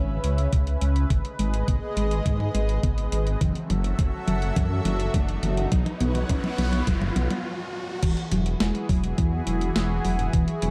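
Synthwave with a cinematic, driving mood, built on a lush, detuned unison pad holding sustained chords with chorus, phaser and sidechain pumping, while a soft, round pluck plays arpeggios through chorus and delay in the background under a filter sweep. A deep, rumbling detuned saw bass sits up front, pumping with the sidechain, as a thumpy electronic kick and an overdriven 12-bit drum machine with snare, hi-hat, toms and crash fill out the beat, with an electronic riser arriving at 1.3 seconds and a noise sweep joining at 5.7. The harmony moves from C#m7 through G#m, F#m7 and Bsus2, and after a brief stop at 7.4 seconds the music lands on Eadd9, all in a dark production with light reverb.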